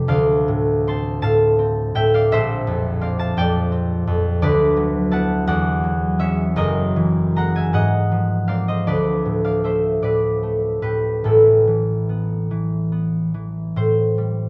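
A solo concert harp carries this brief classical excerpt, its fingerpicked strings ringing out up front across a span from F1 to C6. The mood is wistful and gentle, moving in a rubato 6/8 at roughly 46-58 BPM counted in dotted quarters, with tuning set to A4 = 439 Hz. The harmony drifts from Dm9 and Bb69 through a rising chain of thirteenth chords, D13, E13, F#13 and G#13, before settling on Dm6, Amadd9 and finally Am9 at 13.8 seconds. Light reverb surrounds the acoustic harp, and the production leans dark and warm. Cut from a longer piece, the passage lasts about 14.5 seconds.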